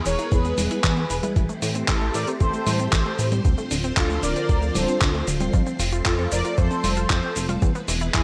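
A mellow synth brass melody and a swirling, phased string machine open this playful, danceable italo disco excerpt in F major, at 115 BPM in a straight 4/4. The brass is brassy and dark, with vibrato, chorus, phaser and tape echo, while the string machine holds vintage, sustained chords under its ensemble chorus. At 0.1 seconds, a glossy, chorused pulse-wave synth bass arrives. With it come round, detuned analog pluck arpeggios set back in the mix with tape echo, and a gritty, sampler-style soul kit of cabasa, congas, handclaps and hi-hat, placed up front with gated reverb. A compressed, thumpy electronic kick joins at 0.3 seconds. The chords move from E through Am7, Dm7 and F before returning to E, and the mix stays dry.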